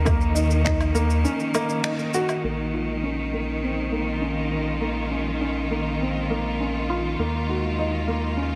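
A felt-muted upright piano carries this melancholic, intimate piece of piano and strings electronica, playing a mellow, short-sustained riff between Bb3 and Bb4 through a low-pass filter and delay. Beneath it, a bright, lush studio string section holds bowed chords with vibrato, its level pumping with sidechain, while a round, deep analog bass plays low, between Bb1 and Eb2, and pumps in the same way. The track moves at 101 BPM in a straight 4/4 in Bb minor, beginning on Ebm7 and shifting to Bbmadd9 at 2.4 seconds before returning to Ebm7. At the start, an overdriven, punchy electronic kick drum appears only briefly, while a layered, overdriven kit of electronic shaker, woodblock and finger snaps runs until 2.4 seconds, through a drop with a break and a band accent at 1.8 seconds. After that the piano, strings and bass continue on their own in light reverb. This cut from a longer piece feels close and melancholic, with the intense, up-front strings set against the soft felt piano.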